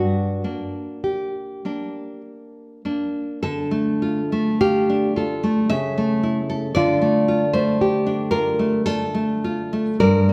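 This is a romantic duo for two nylon-string guitars, heard as a short excerpt cut from a longer piece, with an elegiac, solemn mood. It moves slowly in 3/4 at around 49-58 BPM with a rubato feel, tuned to A4 = 438 Hz. One guitar carries a full-bodied, fingerpicked melody in a narrow band from F4 to Bb4. The other guitar plays a fingerpicked accompaniment spanning G2 to F5 and sits up front in the mix with a deep classical tone. The harmony opens on G minor and then shifts to D minor at 3.4 s, passing through A/C# before settling back on D minor. A wet recital-hall reverb, like that of a church or concert hall, wraps the pair in a 1.4 s decay.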